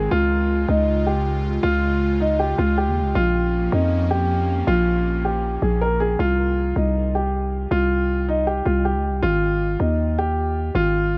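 A growling, buzzy 808-style bass sits up front under a dark, mellow grand piano melody filtered and touched with digital delay in this melancholic, hard-hitting half-time hip hop cut in C phrygian at 158 BPM, while an airy, breathy pad with a warbling chorus holds vintage-tinged chords over Db and Bbm until 6.2 seconds, after which piano and bass carry the shift to C5 and Ab5 chords in a small, lightly reverberant room.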